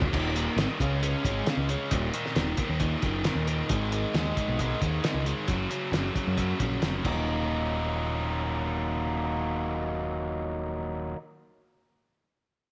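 A straight 4/4 pulse at 134 BPM drives this restless, bittersweet indie rock excerpt in Eb minor, where a cloth-damped, thuddy drum kit with a fat snare and muffled, rolled-off top plays a fill at 7.0 seconds before dropping out at 7.2, leaving a biting, double-tracked overdriven guitar riff up front and a growling, bright fingered electric bass with overdrive to carry on through about 11 seconds in a small, lightly reverberant room.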